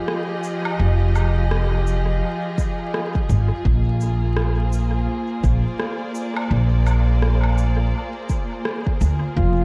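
A swung sixteenth-note groove in 4/4 drives this deep, spacious ambient dub fragment, with overdriven electronic rim click, shaker and woodblock ringing through dub echo from the start and a layered, deep electronic kick joining at 2.6 seconds. A woody, growly pizzicato upright bass sits up front with tube saturation, while a distant bowed chamber string section holds rich, vibrato-laden chords moving from Fm7 to Bb7. Just before the cut, a veiled, bucket-muted trumpet surfaces at 9.4 seconds, all set in a small room's light reverb over vinyl crackle.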